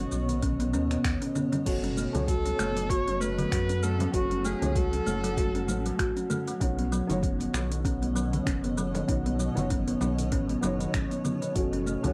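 Organic downtempo in F# dorian at 97 BPM with a lightly swung 16th feel, earthy and hypnotic, built on an F#m chord and cut from a longer piece. A clear, smooth bowed kamancheh carries the melody with vibrato and portamento through 6.0 seconds, over a cloudy granular pad with sidechain pumping, woody thumb-plucked kalimba arpeggios with analog delay, and a round, dark analog bass. An overdriven deep electronic kick and an afro-pop kit with metallic hats, snaps and shaker drive the groove alongside very quiet, band-limited congas, while a felt-muted upright piano with audible action noise joins in the background at 1.7 seconds, all given a cassette-tape home-recording character.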